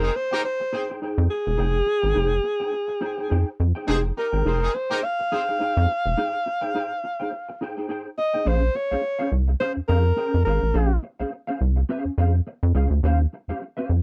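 Sly and funky, this dry, close 1970s-style funk excerpt puts a breathy, whispered alto saxophone melody with scooped notes up front over a rubbery, hollow square-wave bass, a mellow, clean electric guitar with ensemble chorus and a distant, roomy horn section that stops at 5.4 seconds, with a break at 6.2 seconds and a move from Fm9 to Bbm9 at 8.5 seconds.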